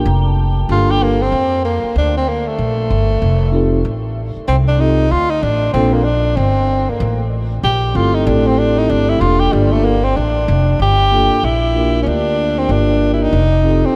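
A ringing soft-mallet vibraphone fill opens this mellow, nocturnal jazz-hop fragment with swung sixteenths before a breathy, subtone tenor saxophone takes an up-front solo with light vibrato and scooped notes from 0.7 to 10.8 seconds, carried over a woody, growly pizzicato upright bass and the vibraphone's gentle comping, all soaked in a dreamy, huge ambient reverb.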